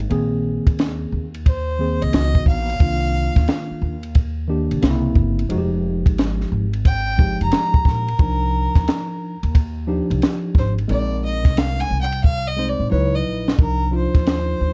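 A dark, bowed violin with light vibrato carries the melody from 1.5 seconds over a worn, slightly out-of-tune tine electric piano, a woody, growly pizzicato upright bass and a compact cocktail drum kit with a high-tuned snare and punchy kick, in this cool, nocturnal jazz-hop excerpt in C minor at 89 BPM with a swung feel, extended minor chords, light reverb and a drum fill from 12.2 to 13.6 seconds.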